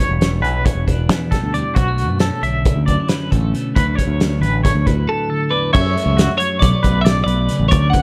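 A growling, overdriven fingered bass sits up front beside a loose indie drum kit with a punchy kick, fat snare and dark cymbals, the kit pumping through a small room in this playful, bright fragment of math rock and midwest emo in 9/8. A clean, twangy electric guitar picks tremolo-tinged arpeggios over a compressed twelve-string electric guitar chiming chords in the background, moving from Em7 to Bm9. After a break at 5.1 seconds, a second, sparkling twelve-string guitar steps forward with a picked melody as the harmony shifts to F#m7 and Bm7.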